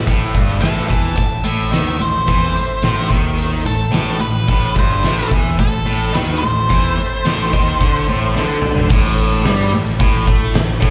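A straight, heavy groove in common time drives this brooding blues rock and southern rock cut from a longer piece, anchored by an oversized, low-tuned acoustic drum kit whose fat snare, punchy kick, toms, hi-hat and crash sit up front in a bright, stone-like room that pumps. A double-tracked, picked rhythm guitar, overdriven and up front with spring reverb and slapback echo, grinds out a low riff over a single minor chord, while a fingered electric bass, heard direct and warm, holds down the bottom. Deep in the background, a gritty, thick tonewheel organ sustains chords through a slow rotary speaker with chorus vibrato. Entering at 0.6 seconds, a nasal lead guitar with a parked wah and overdrive sings a melody in the upper register, its tone warm and touched by slapback echo. A drum fill at 8.4 seconds leads into a closing stretch where the chord drops away and the organ stops at 8.9 seconds. 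The whole performance comes across as a live club gig heard through the venue's PA, with small-room ambience and club reverb.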